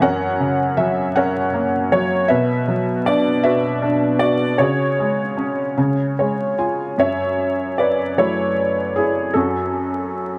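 A felt-muted upright piano plays alone and up front in this short, reflective and dark classical excerpt, its soft, mellow tone touched with thin felt and a tape echo, moving in a rubato 6/8 at 52 BPM from F#2 to G#5. The harmony passes from F# through Bm and C#sus4 to C#, where a felt piano fill at 5.8 seconds leads into a new section at 7.0 seconds on F#m7 and a rootless D/F#. Moderate spring reverb and a worn, warbling cassette character with vinyl crackle and drifting pitch give the intimate sound an aged, hazy feel.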